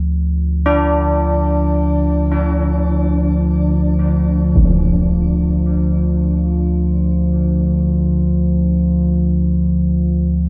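An echo-heavy mix with light small-room ambience frames this desolate, ominous dark ambient drone fragment, where a deep, rumbling drone with a slow attack and long release sits up front under its own reverb, while clangorous, bronze old church bells ring beating arpeggios through analog delay and shimmer reverb from 0.7 to 4.8 seconds, and a huge, low-pass-filtered impact lands at 4.6 seconds.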